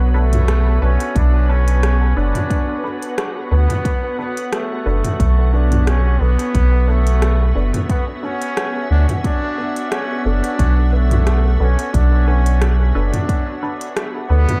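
A dark, warm production with light reverb opens this spacious, deep ambient dub cut from a longer piece, moving at 89 BPM in 4/4 with a gentle sixteenth-note swing and resting on a single Bm7 chord in B minor. A round, soft sub bass with tube saturation sits up front from the start, under a pure, calm organ-like pad whose slow-blooming sustained chords carry ensemble chorus and reverb. Muted, detuned chord stabs drift in the background through phaser, subtle chorus and dub echo, while a brilliant, distant trombone plays a solo melody in a classical style, its line trailing dub echo. An electronic kit with crisp hats, rim clicks and toms, overdriven and re-recorded in a large room, is joined at 1.2 seconds by a layered, overdriven kick. From 6.5 seconds a very quiet, resonant bubbling texture with random filter steps hovers high in the register around F#5.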